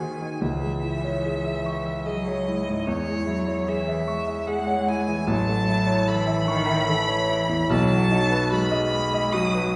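A reverberant recital-hall sound with its top end rolled off frames this short cut from a slow, lyrical movement for piano trio in C# minor, flowing in a rubato 3/4 at 74 BPM. An up-front grand piano with long sustain carries the accompaniment across a broad range, while a single bowed violin, rich and focused with vibrato, sings the melody and one bowed cello adds an expressive second line with vibrato and portamento, both strings sounding a little distant. The harmony moves from C#m through C#m/E and A to B7, giving the passage a warm, romantic glow.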